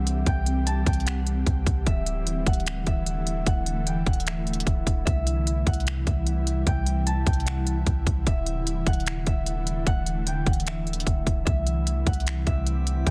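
Dreamy and blissful, this atmospheric cloud-rap excerpt moves at 150 BPM in a half-time feel in C lydian, drifting between C and Dsus2 chords. A thumb-plucked concert harp rings out a high melody through tape echo, floating over a detuned, airy pad that breathes with sidechain pumping and ensemble chorus. A round, deep 808-style bass and an up-front trap kit of finger snaps, crisp hats and a hard-clipped kick anchor the dense, heavily limited mix, while a faint glassy texture of drifting overtones slips in at 12.0 s.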